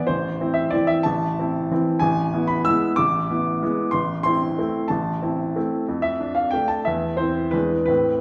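Heard from further back in a recital hall, the recording is bathed in a wet reverb of about 1.7 seconds, while the upright piano itself comes through clear, woody, smooth and vintage. This is a short classical piano waltz in A minor, cut from a longer piece, with a bittersweet, nostalgic mood. The solo piano plays for the full 8.2 seconds, ranging from A1 to E6, in 3/4 at a lively 165 to 199 BPM with a flexible, rubato feel. The harmony alternates between A minor and E7 over an A bass, then moves through Dm/F and C/E before arriving on E7 at 7.5 seconds, where the recording ends.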